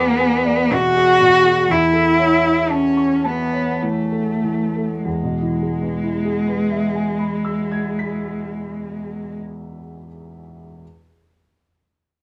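A single bowed cello carries the melody, singing up front with expressive vibrato and gliding portamento between notes in a range from G#3 to F#4. This serene, romantic classical duo in E major moves in a rubato 3/4 at roughly 46-63 BPM, and it slows down through its opening phrase. The grand piano accompanies beneath the cello with a natural tone, spanning a broad register from deep E2 bass notes to B6 highs. The harmony moves from E7 to A over an E bass and comes to rest on E at 5.1 seconds, where a second section begins. The cello falls silent at 9.4 seconds, leaving the piano alone until 10.8 seconds, all within a warm, light reverb in this short passage cut from a longer piece.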